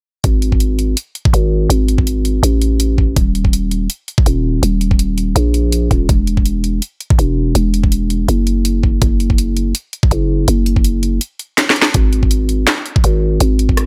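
A growling, buzzy 808-style bass anchors this dark, heavy half-time drum and bass cut, its sine-based tone hitting with a fast attack and then decaying, sitting up front in the low register from D#1 to A#1. It runs at 164 BPM in 4/4 with a light 16th-note swing, and the half-time feel gives the groove a weighty, deliberate stride. An overdriven electronic kick drum adds a knocking, layered punch, while the overdriven drum kit supplies a cracking snare, bright hi-hats and rim clicks, both re-recorded in a small room and placed up close. A short drum fill arrives at 11.6 s before the section carries on. The mix is dry and loud, with little reverb, and the passage is clearly taken from a longer piece.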